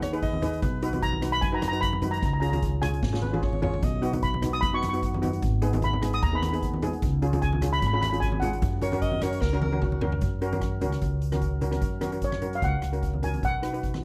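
Sunny and bouncy, this calypso moves at 150 BPM in F# major with a light sixteenth-note swing, captured in a dry, close 1970s-style studio sound with small room ambience. A lead steel pan, played with soft rubber sticks, carries the melody up front with a mellow, shimmering tone, dropping out at 9.8 seconds and returning at 12.2 seconds. Beneath it, a second pan struck with hard rubber sticks supplies boxy accompaniment over changes that circle through G#m7, B, C# and F#. A breathy, close-miked alto saxophone adds an intimate second line in a whispered jazz style, with vibrato and scooped notes, playing only at the start and again briefly near 8.8 seconds. Pizzicato upright bass on steel strings gives a woody foundation, while a street-band drum kit with a boomy kick and polished, airy sound throws in fills, joined by low-tuned, saturated congas sitting in the background. The clip is cut from a longer piece.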